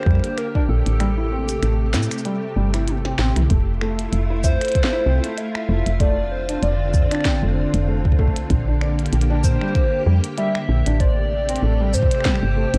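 IDM at 96 BPM in A phrygian, this cerebral, intricate excerpt moves with a light 16th-note swing through a dark production with little reverb. A warbling, nostalgic lead with vibrato carries the melody through analog chorus and digital delay, while a silky string machine holds slow-attack chords beneath it under an ensemble chorus. A felt-muted upright piano plays intimate arpeggios coloured by 12-bit sampler grit and tape echo, and a woody, round FM bass sits up front as the loudest part alongside a deep electronic kick. A glitchy kit of cabasa, finger snaps, clicky hats, a tiny snare and toms fills out the rhythm in a small room. The kick drops out from 1.0 to 3.5 seconds, with a drum fill from 2.9 seconds leading into a second section where the chords move from Fmaj7 through Dm7/F and Bb6 back to Am7.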